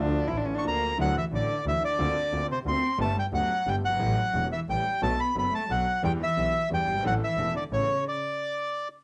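Nostalgic and playful, this rubato tango in 3/4 is cut from a longer piece and puts a reedy bandoneon up front, carrying the melody from 0.6 seconds with a cassette-tape color. Beneath it, a warm bowed cello sings an expressive second line with vibrato, portamento and a soft attack. An intense bowed double bass with light vibrato and a smooth top holds the low end, while a clear, vintage-toned grand piano with deep bass accompanies from the background. The whole home cassette recording sits in moderate studio ambience before the music breaks off at 8.1 seconds.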